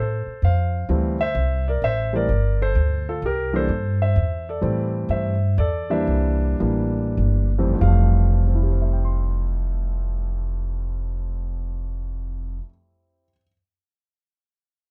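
Close, detailed microphones and little reverb give this jazz excerpt an intimate, dry sound, with both instruments placed up front. A dark, mellow concert grand carries the melody across a broad register, its natural tone reaching into a deep bass. Beneath it, a pizzicato upright bass with steel strings adds a woody low end and sits slightly louder than the piano. The mood is relaxed and playful, moving in a swung three-beat metre through chords such as Fmaj7, Am7 and C7 before settling on Fmaj9. The pace slows between 4.6 and 7.8 seconds, and the bass drops out at 12.6 seconds, leaving the piano to finish alone at 13.5 seconds.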